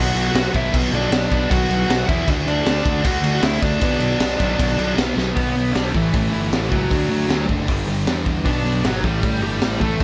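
Angry and aggressive, this 10-second punk rock cut from a longer piece drives at 155 BPM in B minor, with a dark, smooth overdriven lead guitar carrying the melody over a bright, double-tracked high-gain guitar and two very quiet sludgy distorted guitars playing riffs, a punchy fuzz bass, and a raw garage drum kit that enters at 0.2 seconds with a boomy kick, high-tuned snare and pumping small-room sound up front, throwing in a fill at 5.2 seconds as the music moves from Bm and D toward A, G5 and A5 under light reverb.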